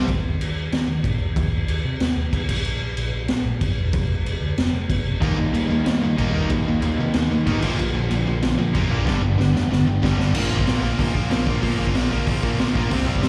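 A raw live-gig sound, heard through the venue's PA with small-room ambience and a recital-hall reverb, frames this rebellious, energetic punk rock excerpt at 187 BPM, which runs in half time until 10.3 seconds, with a drum fill from 9.1 seconds. A gritty, up-front garage drum kit with a high-tuned snare and punchy kick plays alongside a growly overdriven picked bass from 0.1 seconds, while three guitars return with their riff at 5.2 seconds: a crunchy overdriven one with slapback echo, a bright distorted one, and a double-tracked fuzz guitar with slapback echo, the first and last sitting in the background. The chords move through Eb5, Bb5 and a brief chordless stretch, then Eb, Bb and G before landing on Bb for the closing section at 10.3 seconds.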